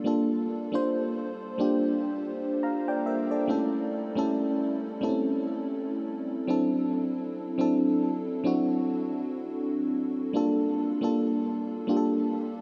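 A lazy 70 BPM 4/4 groove with a gentle 16th-note swing carries this moody, sensual R&B fragment, where a lone FM electric piano layered with a soft pad plays up front from 0.0 to 12.6 s, its mellow, detuned, warbling vintage tone shimmering with chorus and analog delay as it moves through Gm7, A7 and D7 before returning to Gm7, all bathed in a huge, dreamy reverb tail over a small-room ambience.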